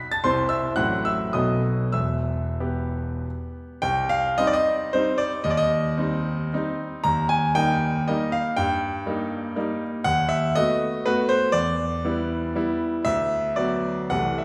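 A lilting 3/4 dance with dotted rhythms moves with free rubato, its tempo drifting between 86 and 128 BPM in this wistful, nostalgic romantic classical piece, cut from a longer work. A solo concert grand piano spans E1 to B6, sitting up front with a clear, smooth tone, a deep bass and a slightly vintage character. The opening passage in E minor moves through C, a half-diminished chord and B7 before settling on E minor. At 3.8 s the music turns to C minor, passes through E-flat major, then returns to E minor by way of B7 and closes on B minor over D at 13.1 s. A wet recital hall reverb with a 1.9-second decay surrounds the piano, giving it the generous resonance of a church or concert hall.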